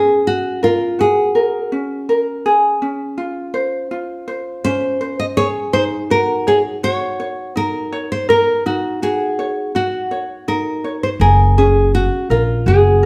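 Acoustic pop with a carefree, sunny mood, this short excerpt moves at an easy, straight pulse in four. A fingerpicked nylon-string guitar carries the melody with a classical touch, sitting up front alongside a light, fingerpicked ukulele that supplies the accompaniment throughout. The harmony moves through Gbadd9, Dbmaj7, Ab7sus4 and Ebm7 before returning to Gbadd9. At 11.2 seconds a pizzicato upright bass with steel strings enters, woody and close, adding low weight for the final stretch. The trio sounds like a band playing live together in one large studio, wrapped in a moderate reverb that gives the plucked tones a warm, airy space.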